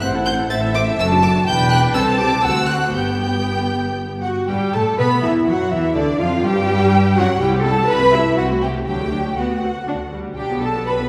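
A quick classical-period movement for string orchestra in 3/4 at 122 BPM, played with a rubato feel in G major, this graceful, cheerful passage is cut from a longer piece. The first violins carry the melody, soaring up to A6 with a sul tasto, intimate tone, light vibrato and soft attack, while a rich, focused second violin section sits a little distant behind them on a second line and drops out at 10.9 s. A bright viola section fills in the accompaniment, and a dark, woody cello section joins a distant, expressive double bass section with soft attack to anchor the bass, the double basses reaching down to E1. All five sections are bowed with vibrato and enter together at the start, with the violas, cellos, double basses and first violins continuing to 11.1 s, across a phrase stated twice and split at 4.5 s. The harmony moves from A minor through D/F# and Em7 to a settled G, then past a brief chordless moment at 6.9 s toward C, D and a closing B minor. 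A wet scoring-stage reverb places the orchestra further back in the room.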